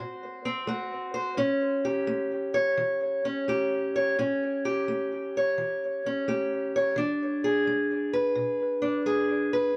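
A laid-back swing at 86 BPM in 4/4 carries this short blues fragment, lifted from a longer piece and lasting just under 10 seconds. A single fingerpicked steel-string acoustic guitar plays alone, and its parlour-style tone is dark and boxy, sitting up front in the mix with a touch of analog delay. Set in A mixolydian and tuned slightly low to A4 = 438 Hz, the guitar spans A2 to C#5, giving the swaggering mood both low weight and some higher notes. The harmony opens on a rootless D7, settles onto A7 at 1.4 seconds, and reaches E7 at 7.0 seconds. A moderate studio reverb gives the performance a modest sense of room.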